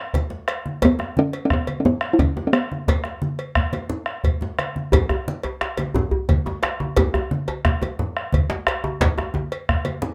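A 12/8 pulse at 117 BPM drives this festive, earthy West African drum ensemble excerpt, built on a round, up-front bombo, thick-skinned, low-tuned congas, a metallic, close cowbell and a deep djembe under soft hands, while a short-ringing talking drum with plate reverb carries a brief melody from 0.8 to 2.9 s, and after a drum fill a second djembe, tight and cracking, joins at 4.9 s in a small, moderately reverberant room.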